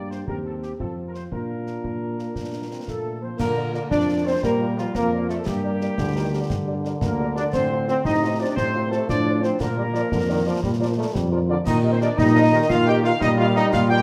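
A dark, up-front tuba anchors this proud, spirited 6/8 military-style wind band march in Bb major at 116 BPM, where a punchy, distant trumpet section carries the melody over soft-edged French horns, close and dry snare, bass drum and clash cymbals, a vibrato-laden euphonium second line from 1.8 seconds, and from 2.9 seconds an airy flute section and sustained trombone chords, all set in a moderate recital hall reverb.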